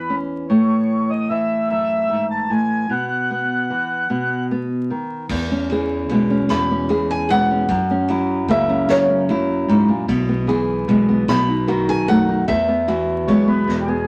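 A mellow, reedy accordion opens this pastoral, nostalgic folk excerpt in 6/8 at 50 BPM in E major, carrying the tune alone over fingerpicked nylon-string guitar until 4.5 seconds. At 5.3 seconds a round, dark electric bass and a distant, roomy drum kit played with bundle sticks enter. At 6.5 seconds an old ladder-braced acoustic guitar takes the melody up front, boxy and picked with audible finger squeak, while the accordion returns briefly near the end and a drum fill begins at 13.7 seconds. A small room reverb and vinyl crackle give the sound a homely, aged character.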